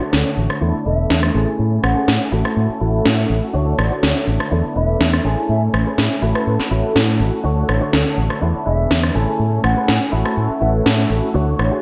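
Sensual and funky, this filtered disco house passage in F# minor at 123 BPM cycles through Dmaj7, E7sus4, Amaj7 and F#m7/A under a filter sweep that spans the whole clip. Up front sit a warm fingered electric bass and an overdriven, cracking electronic snare with rim click drenched in gated reverb, while a mellow, dark sawtooth synth brass carries the accompaniment through chorus and phaser. Behind them a bright, compressed clean electric guitar picks a riff, a lush string machine holds very quiet sustained chords, and a hollow, pure concert flute sings a tongued melody with vibrato from 0.9 to 10.0 seconds, all set in plate reverb and bright 1980s-style digital production.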